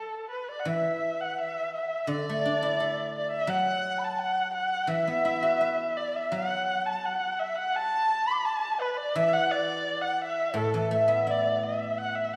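Chinese traditional chamber music, festive and pastoral, unfolds at a rubato 85 BPM in 2/4 as a dark, woody erhu carries the melody up front with vibrato and portamento from the start, a hollow bamboo dizi with a buzzing membrane enters at 0.3 seconds as a distant second line in the background, and a bright, silvery guzheng played with fingerpicks rings out its accompaniment from 0.7 seconds, all set in the wet reverb of a recital hall in this cut from a longer piece.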